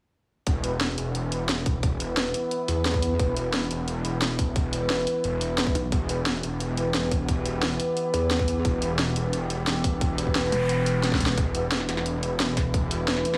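A pulsing, heavy wobble bass pushes to the front of this dark technical drum and bass piece, cutting in briefly around 2.7 seconds and again from 8.1 to 11.4 seconds with a saturated, compressed sine weight. At 176 BPM in E minor, the mood is mechanical and aggressive, built on a tight, up-front electronic kick and a layered kit with cracking snare and hi-hat that runs through the whole passage, capped by a drum fill at 11.0 seconds. Beneath it, a thick, detuned sawtooth bass holds a sustained low E with overdrive and chorus. A mellow brass ensemble plays smooth, classical-style stabs colored by tape echo, while an eerie, nasal FM drone in the background sustains chords with a slow attack, its own reverb and sidechain pumping. A noise sweep enters in the background from 10.3 seconds, and the whole is set in light digital ambience in a cut from a longer piece.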